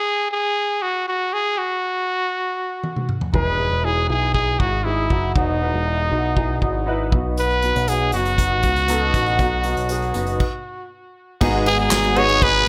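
Piano-driven pop in E major at 119 BPM, this anthemic, warm fragment of a longer piece opens with a raspy, growling trumpet carrying the melody up front with light vibrato. An acoustic drum kit played with bundle sticks enters on a fill at 2.8 s, its gated reverb wrapping a tight kick, medium-tuned snare, hi-hat, crash and ride cymbals, toms and handclaps, while a polished grand piano with short sustain and ensemble chorus moves through Emaj7 and B over a punchy picked electric bass with an envelope filter. After a brief stop, the harmony shifts to G#m7 as a very quiet, detuned sawtooth analog pad with a soft attack arrives at 11.4 s, all set in a bright 1980s-style digital production with moderate plate reverb and small room ambience.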